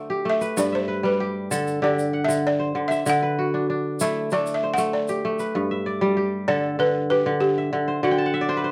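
Set in a moderate studio room, this flowing, warm West African traditional piece at 96 BPM in G major features a woody, buzzing balafon played with soft rubber mallets and treated with plate reverb, carrying a featured melody through the first 5.5 seconds, while a crisp, ringing, fingerpicked kora arpeggiates up front throughout and closes with a fill at 8.0 seconds, and a grainy, mellow tube shaker adds percussion until 5.5 seconds, all in a short cut from a longer piece.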